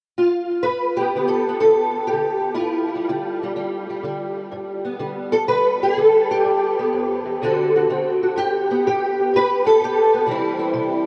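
A lone fingerpicked steel-string acoustic guitar enters at 0.2 s with a dark, boxy parlour tone, sitting up front in a soulful, swaggering country blues passage cut from a longer piece, swung at 125 BPM in 4/4 and set in G mixolydian. Ensemble chorus and tape echo color the guitar as it rests on G7 before moving to D7 and then, at 8.4 s, into a new passage on G and C. The whole dreamy, cassette-toned mix is soaked in a huge ambient reverb.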